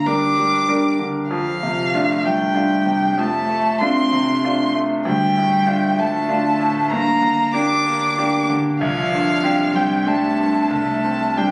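A bright, brilliant concert grand piano sits up front, its accompaniment reaching from deep bass notes at C2 to Bb4 in this hopeful, intimate neoclassical piece in F major, moving in a rubato 3/4 at 96 BPM. Above it, a single bowed violin carries the melody from F5 to D6 with a dark, woody tone, smooth top and vibrato, also placed close to the listener. A lone cello plays a second line between F3 and D4, bowed sul tasto with a soft attack and a pure, floating quality. Beneath them a very quiet sub bass adds deep, punchy sine tones with a pitch-drop attack and sustained body. All four parts play throughout the 11.5 seconds of this passage cut from a longer work, as the harmony moves through Gm, F6, Dm, Gm and Csus2. The sound was captured on a phone in the room, with a moderate recital hall reverb of about 1.3 seconds added.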